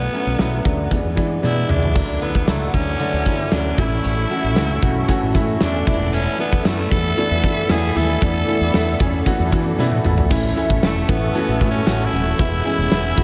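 Romantic and uplifting, this 1980s-style pop passage at 115 BPM in A major sets a raspy, breathy tenor saxophone melody with vibrato and diffuse delay over a clear, up-front concert grand piano, a punchy fretless electric bass with subtle chorus, and a huge arena drum kit with a fat snare, tambourine and fills at 1.4 and 9.8 seconds, while a swirling, detuned slow-attack analog pad with phaser enters in the background at 2.0 seconds, in a dreamy mix soaked in huge reverb.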